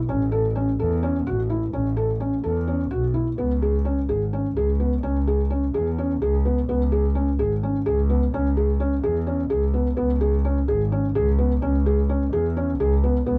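Moving in an uneven 7/8 at 255 BPM counted in eighths with a straight feel, this hopeful, shimmering piece of contemporary chamber music pairs a soft, intimate felt-muted upright piano playing arpeggios with audible action noise and a warm, bowed double bass with light vibrato, both up front from 0.1 s to 13.4 s, as the harmony moves from A and Aadd9 into an alternation of C#5 and C#m around 3.4 s, all in a dark production with light reverb, cut from a longer piece.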